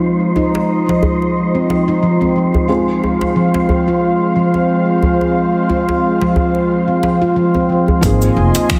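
Set in a wet echo-chamber reverb with studio ambience and squeezed into a heavily compressed, radio-like sound, this peaceful, organic downtempo excerpt with a gentle swing opens on a vintage, warbling analog pad under a sweeping filter, a breathy wind-like noise texture and a soft, felt-muted upright piano tucked in the background, both pad and piano pumping with sidechain and the piano trailing a digital delay. From 0.4 s a ringing, meditative handpan plays up-front arpeggios through its own delay while a tight, cracking djembe adds close, dry hand percussion. At 8.0 s a woody pizzicato upright bass with tube saturation arrives alongside a punchy electronic kick and a deep house kit of cabasa, finger snaps and dark hi-hats.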